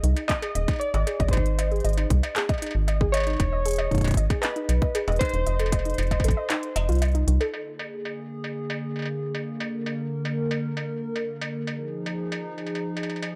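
A dark, metallic FM bass sits up front in this eerie, cerebral IDM excerpt at 116 BPM, joined by a heavy electronic kick and a tape-softened industrial kit of handclaps, crisp filtered hats and struck metal. Warbling, dusty pluck arpeggios drift through lush chorus, tape grit and delay while nostalgic lo-fi synth keys carry a mellow, full-bodied melody over chords that move from Ab through E6 and F7. The kick drops out at 6.5 seconds, and at 7.5 seconds a hollow, flute-like pad with 12-bit sampler grit enters with airy sustained chords as the industrial kit continues, all set in a light digital ambience.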